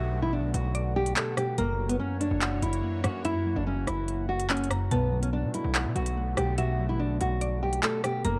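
A fingerpicked nylon-string guitar with a full-bodied, deep classical tone and audible finger squeak carries the melody up front through low-pass filtering and digital delay in this ominous, dark drill hip hop passage at 144 BPM in a half-time feel in B minor, cut from a longer piece, moving from Bm7 to F#7 at 1.6 seconds and back to Bm7 at 4.9 seconds, while muted, intimate felt-like synth keys with chorus and phaser, a woody, round mallet-like synth pluck and a bright, detuned sweeping resonant pad with a filter swell sit behind it, a saturated, aggressive, heavy distorted 808-style bass carries the low end, a very quiet electronic downlifter opens the first seconds, and a crisp, up-front drill drum kit of handclaps, hi-hat and rim click enters at 0.5 seconds, all in a dark production with light reverb.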